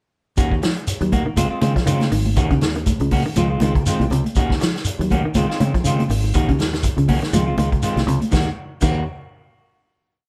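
A growly, punchy fingered electric bass drives this short afrobeat piece with a syncopated riff at a swung 121 BPM in Eb dorian. Alongside it, a vintage drum kit plays an up-front afro groove with a punchy kick, medium-tuned snare, hi-hat and crash, while a grainy shekere and damped, high-tuned congas, heard in the background from 1.1 seconds, fill out the percussion. A dark, clean electric guitar with spring reverb jabs funk-strummed stabs in upper chord shapes, and a hollow-bodied semi-hollow guitar, entering at 0.6 seconds, repeats a fingered arpeggio ostinato. The harmony alternates steadily between Ebm7 and Dbmaj9, building an intense, hypnotic loop that feels like a band playing live together in one room with light reverb. At 8.3 seconds the groove gives way to a final Ebm chord that rings out to the close.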